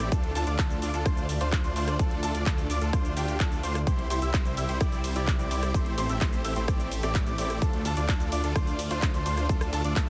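Powerful and emotional, this festival progressive house excerpt drives at 128 BPM in D minor, cycling through Dm, C, Am7 and back to Dm, with a punchy, layered electronic kick up front and a big-room kit of handclaps, metallic hi-hats, ride cymbal, rim click and shaker. A huge, euphoric supersaw lead carries the riff with bright, detuned sawtooth bite and digital delay, over a thick, menacing, saturated saw bass whose detuned tones beat against each other. Behind them, a dark, mellow grand piano plays delayed arpeggios and a lush, slow-attack unison pad holds chorused, phased chords; the lead, bass, piano and pad all pump with sidechain in a dry, heavily compressed radio-style mix.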